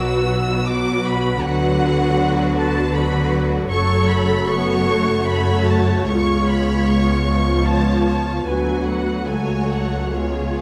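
A solemn, melancholic slow romantic orchestral movement in F# minor, taken from a longer piece, begins at once with every part sounding together at a rubato 77 BPM in 3/4: a rich, vibrato-laden violin section carries the melody high above a lush, expressive second violin line, violas glide with portamento through the accompaniment, dark French horns sustain chords in the background, and smooth cellos join a close double bass section on the bass, set in a moderate scoring-stage reverb.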